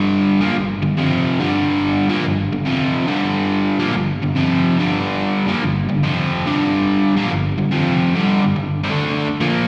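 A crunchy, bright, overdriven electric guitar, picked and double-tracked up front with slapback echo, plays solo from 0.0 to 9.7 seconds in this heavy, smoky rock fragment at 142 BPM in G minor, its swung eighths moving between Gm and F5 before shifting to G5 and D5 at 8.2 seconds, captured as a live gig through the venue's PA with light recital-hall reverb.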